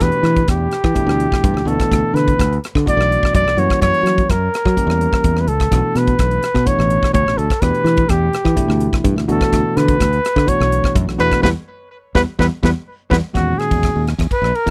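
A straight 4/4 groove at 126 BPM drives this slick, funky electric jazz fusion excerpt in E dorian, with a crisp, polished drum kit up front, its high-tuned snare and punchy kick joined by hi-hat, ride cymbal and rim clicks, while a bright, direct fingered electric bass holds the low end. Over a bell-like, clean tine electric piano accompanying through chords like Em7, D69 and F#7b9, a dark, breathy trumpet takes the solo melody up front with light vibrato and scooped notes. The band hits an accent from 11.4 to 13.3 seconds before the harmony opens onto an Emaj9, all captured in a dry, close 1970s-style studio sound.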